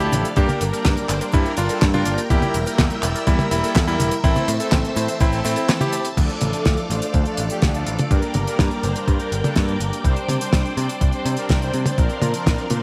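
Bright 1980s-style digital production with light studio ambience frames this danceable, melodramatic italo disco excerpt in D minor at 124 BPM, where a thumpy, up-front electronic kick and a dry 70s drum kit with fat snare, handclaps, cabasa, toms and crash drive a warm picked electric bass, while swirling phased string-machine chords and fat, brassy synth stabs with chorus and delay sustain throughout, a cutting, clangy electric grand piano carries the melody with delay and a very quiet detuned unison pluck arpeggiates above it until both stop at 6.1 s, leaving the band to move through Dm, Gm, Csus2 and Bbadd9.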